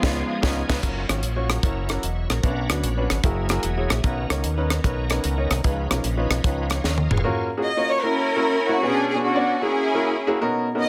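Reverent and uplifting, this uptempo gospel excerpt moves at 150 BPM in 4/4 with a swung eighth-note feel, in F# major with the tuning set slightly low. The full band opens with a short accent, in which a rich, lush string section carrying the melody with vibrato briefly sounds before dropping out; the strings return at 7.6 seconds to lead the closing section. A clear, intimate grand piano with audible action noise plays accompaniment throughout and adds a fill around 3.2 seconds, while a bright, shouting tonewheel organ, lightly overdriven with chorus vibrato and a slow rotary speaker, holds sustained chords and takes its own fill before stopping at 7.5 seconds. Underneath, a round fingered electric bass through an envelope filter and a tight, dry funk kit with a high-tuned snare, bright cymbals and a tight kick sit up front until a drum fill closes them out at 7.2 seconds. Extended chords such as C#9, F#maj7 and Bmadd9 give the harmony a churchy color, and the whole is set in light studio reverb with a dense, heavily limited modern master.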